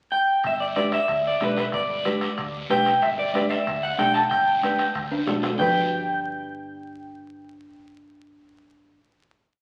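Heard through the crackle of a very old 78 rpm record and a wet, large studio reverb, this short, sunny cumbia is made for dancing. An electric guitar through a small old amp, slightly broken-up and up front with spring reverb, opens with a pickup at 0.1 seconds and carries a picked melody built from hook phrases. From 0.4 seconds a dark, round hollow-body electric bass plays a punchy cumbia figure. Entering together with it are raspy guiro, high-tuned congas with a thick skin, a soft-beatered bombo with rim, and ringing metal-shell timbales with bell, the bombo and timbales sitting in the background. A classical-sounding nylon-string guitar adds fingerpicked triad chords, with finger squeak audible. After a drum fill the percussion stops at 5.7 seconds, leaving the guitars and bass to sustain a final chord to the end.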